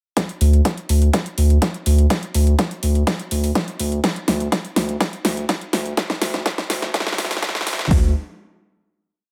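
Progressive house at 124 BPM with a bittersweet, expansive mood, built as one long build-up from 0.2 seconds that rides a drum fill and a filter sweep before a final note rings out from 7.9 seconds. A pop drum kit lays down a punchy, overdriven four-on-the-floor kick with open hats, while a big-room dance kit adds a huge up-front snare on the backbeat and metallic programmed hats that pump with sidechain. Underneath, a deep, thick saturated sub bass sits on D2 with a fast attack and sustained off-beat notes, pumping with sidechain, all within a lightly reverberant, high-passed space.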